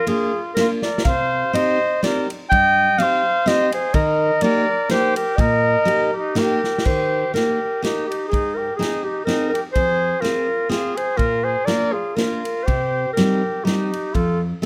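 A mellow, smooth-topped clarinet sits up front and carries the melody of this jolly, festive alpine folk dance, ranging from G4 to G5. Behind it, a distant, roomy trumpet plays a second line, and both wind parts are played in classical style. A bright, full-bodied picked dreadnought guitar, also up front, supplies the accompaniment. A natural drum kit recorded in a studio room keeps time with a medium-tuned snare, punchy kick, ride and crash, adding fills at 0.8 and 6.6 seconds. The tune moves in 3/4 at 124 BPM in Eb major with a swung, rubato feel, is tuned to A4 = 435 Hz, and turns to a new section at 6.9 seconds. Close, detailed microphones and light reverb give a clear sound to this short passage cut from a longer piece.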